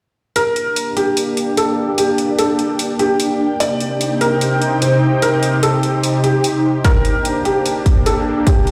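Over a half-time 4/4 pulse at 148 BPM with a light 16th-note swing, this menacing heavy wobble dubstep excerpt in G minor pairs a soft, felt-muted upright piano melody with delay against a lush, detuned supersaw pad that pumps under sidechain and moves through a low-pass filter sweep, while metallic electronic hi-hats tick throughout, an ethereal, airy pad with chorus, phaser and its own reverb joins at 1.4 s, and a punchy, tape-warm kick drum arrives up front at 6.8 s as the chords move from Gm to Cm and back, all set in a large, reverberant room.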